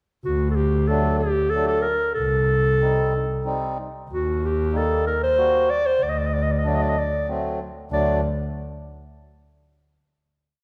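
A church-hall reverb with a 1.8 s tail surrounds this short, soulful and bittersweet klezmer piece in D phrygian dominant at 94 BPM in 3/4, where a dark, smooth-topped clarinet plays an ornamented modal melody up front from 0.2 s, a warm, bowed double bass with vibrato plays an even quarter-note figure, and a reedy, round accordion entering at 0.9 s adds off-beat triad chords over D, Cm and Eb before a final chord at 7.9 s.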